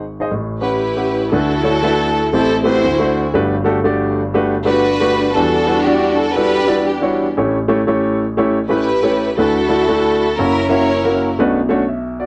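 A polished grand piano opens the passage at 0.0 seconds, sitting up front in an uplifting, reverent gospel setting in D major at 119 BPM, with swung eighth notes in 4/4 and tuning at A4 = 439 Hz. At 0.6 seconds a lush, bowed studio string section joins to carry the melody, its ensemble tone smooth and even with vibrato and a smooth top end. The piano ranges from deep bass up into its upper register as it accompanies. The strings stay in a mid range. The harmony moves from A13 to D69, passes through Am7, D9, Gmaj9, Em9 and A7, returns to D69 and ends on F#7 and Bm9, with the strings stopping at 11.4 seconds as the piano continues. The sound is dry and close, a 1970s-style studio recording with tape saturation and little reverb, and this short passage is cut from a longer piece.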